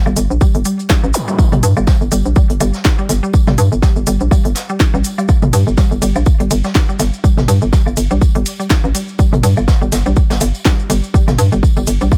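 Minimal techno at 123 BPM in G minor with a swung 16th-note feel, hypnotic and clinical, cut from a longer piece. A punchy electronic kick and a hollow, bouncy FM bass sit up front, with the bass and a squelchy, resonant blip-pluck riff both pumping under sidechain; the pluck is further coloured by chorus and digital delay, while a house kit adds a cracking snare and crisp hats alongside overdriven electronic woodblock and toms. In the background, a brushed jazz kit with a high-tuned snare and grainy maracas add acoustic texture, an electronic zap flicks past at 1.1 seconds, and studio reverb fills the space.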